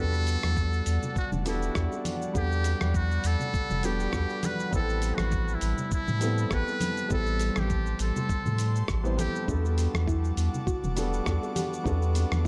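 A muted trumpet with a buzzy, thin tone and light vibrato carries the jazz-style melody through tape echo until 9.5 s, when a soft, round pluck takes over with quiet arpeggios, all within a relaxed sunset chillout groove at 101 BPM in E minor built on a vintage grand piano, a breathy chorused pad, a deep sub bass up front, gritty sampler-style drums with cabasa, hi-hat and rim click, a thumpy kick, and distant congas and bongos, moving from Em11 to Am9 and back in this dark, lightly reverberant excerpt.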